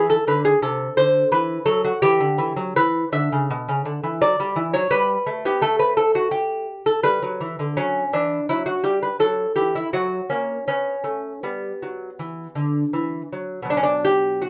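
Loose, rubato beats in 4/4 at about 82 BPM carry this solemn, grave baroque-style classical dance in B minor, a short cut from a longer piece in which a solo lute, fingerpicked on doubled gut strings with some octave courses, sounds delicate and up front across B2 to E5 in a dry, close 1970s-style studio recording, its harmony moving from E7 through Em and F# to settle on Bm at 13.7 seconds.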